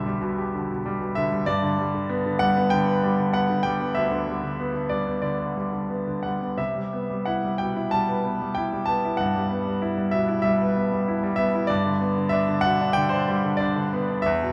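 Classical solo piano in 4/4 at 94 BPM, cool and brooding, with a bright, intimate grand piano playing lyrically with rubato and uneven beats across B1 to A5, sitting up front with its action noise audible in a wet recital-hall reverb as the harmony moves from Em7 through G to Cmaj7 and back to G over this 14.5-second cut from a longer piece.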